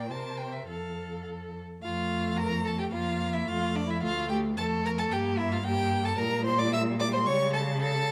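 Urgent and stormy, this quick classical-period movement for string quartet in F major moves at roughly 101-114 BPM in 2/4, with a rubato feel that lets the phrasing push and pull. The first violin carries the melody high above the group with a rich, smooth, even vibrato, while the second violin plays a second line beneath it, warm and expressive and coloured by portamento. The viola fills in the accompaniment with a soft attack and its own slides, and the cello anchors the bass with a deep, expressive tone that sounds somewhat distant despite sitting up front. The brief opening gives way to a longer second section at 1.8 seconds, and the harmony passes from C7 to F before darkening toward D minor and G minor, arriving on A7/C# at 7.3 seconds. Close, detailed microphones capture each bowed instrument clearly within a moderate recital hall reverb, and the passage is cut from a longer piece.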